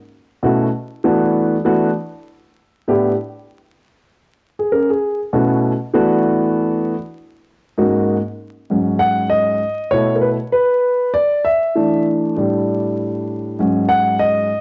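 A dark, intimate grand piano carries this nocturnal, mellow hip hop excerpt on its own from 0.4 to 14.6 s at a swung 98 BPM, its smooth, vintage tone sitting up front with audible action noise and cassette-tape colour as it moves through suspended ninth chords and then, from 8.7 s, suspended seventh chords, all set in a small room with moderate spring reverb, vinyl crackle and a muffled, home-recorded top end.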